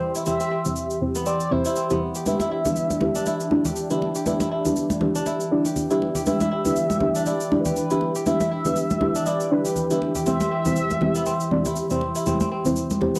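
A deep, dark chord stab with chorus, phaser, analog delay and a filter sweep anchors this hypnotic, spiritual afro house excerpt at 120 BPM in E minor. Alongside it play a smooth sawtooth pad, a crisp fingerpicked kora playing arpeggios through a low-pass filter and delay, and an expressive synth lead with vibrato carrying the melody until 12.0 seconds. A layered electronic cabasa enters just after the start, and hard-hand congas enter at 2.3 seconds. It is captured as a small-room home cassette recording that moves from C/E to Em7 and back.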